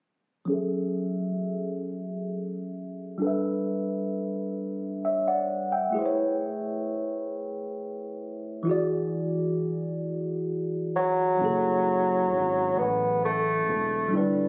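Yearning and sultry, this short cut from a slow R&B piece in a straight 6/8 opens with a clean tine electric piano laying down lush extended chords through a phaser and low-pass filter, with a filter sweep running across its first 11.4 seconds. At 11.0 seconds a mellow bassoon takes up the melody in a low register, soft-edged with light vibrato and a slapback echo, and moments later a deep, dark analog bass enters beneath it with a round, evolving ring-modulated tone. A plate reverb and the club ambience of a phone recording made in the room give the whole a hazy, intimate glow.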